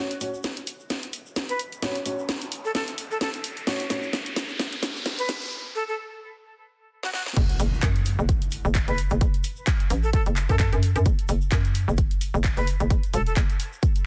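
Bass house with a gritty, swaggering mood, cut from a longer piece, opening with a build-up where a dark, mellow grand piano plays stabs through sidechain pumping, low-pass filtering and tape echo, while a breathy, reedy jazz flute with vibrato carries the melody over a tape-warm house kit of cracking snare, handclaps, hi-hat and crash, a grainy egg shaker in the background, drum fills and an electronic riser. After a short break, the drop lands at 7.4 seconds with an impact, an overdriven, punchy electronic kick and a hollow, bouncy FM bass with overdrive and sidechain pumping, both up front. The dense, heavily limited master sits in light reverb.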